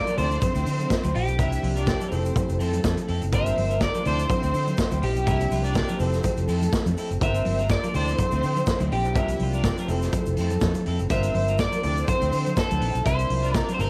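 A sultry, driving disco excerpt opens on a slightly broken-up electric guitar melody bathed in lush chorus, shadowed by a bowed string section's soft, vibrato second line, with a worn, slightly out-of-tune tine electric piano and a dark, very quiet French horn section holding sustained chords beneath. At 0.1 seconds a punchy, up-front vintage drum kit, bright, damped congas, a grainy egg shaker and a clean, picked background guitar join, and at 0.2 seconds a growly fingered bass enters over a repeating Dm9, C9sus4, Fmaj7, Gm7 progression. The lead guitar, strings and background guitar carry a cassette-tape tint, and the mix has the dry, intimate feel of a home cassette recording with little reverb.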